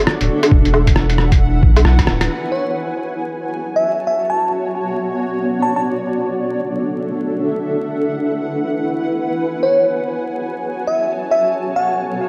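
A swung 4/4 future garage groove of muffled, pitched-down sampled hi-hat, rim click and woodblock, a thumpy kick and a round, pumping sub bass closes with a short fill by 2.3 seconds, leaving a blurred, detuned granular cloud pad with 12-bit grit and sidechain pumping beneath a sparkling, warbling FM electric piano melody with chorus and analog delay that enters at 2.5 seconds, the nocturnal, rainy mood heightened by hall reverb and vinyl crackle.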